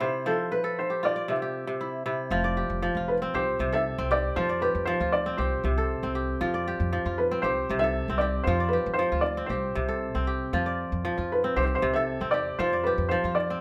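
A felt-muted upright piano carries the melody up front, its soft, boxy tone intimate enough that the action noise of the keys can be heard. Beside it, a kora fingerpicks crisp, ringing arpeggios that spread from its low register up into the piano's range. At 2.3 seconds an upright bass joins underneath with woody, pizzicato lines on steel strings. The harmony moves steadily between F and C in a straight, even four, giving this joyful West African string and xylophone piece a bright, sunny lift. The three players sound as though they are sharing one small room, with a moderate touch of reverb wrapping the mellow, cozy ensemble in a close, live feel.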